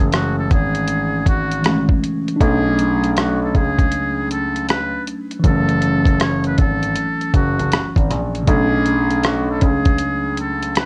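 Lo-fi hip hop at 79 BPM in B dorian, reflective and melancholic, with a 65% swing on the sixteenths and chords moving between F#m7 and Bm7 across this 10.9-second clip from a longer piece. A breathy, buzzy trumpet with a metal mute carries an intimate, jazz-style solo melody with vibrato, while a worn, slightly out-of-tune tine electric piano with cassette-tape coloring plays the accompaniment and a dark, mellow concert grand with tube saturation supplies the deep bass. A gritty, compressed sampler-style drum kit with a thumpy kick, hi-hat and rim click sits up front, and the mix carries moderate studio reverb and a warbling old-tape pitch drift.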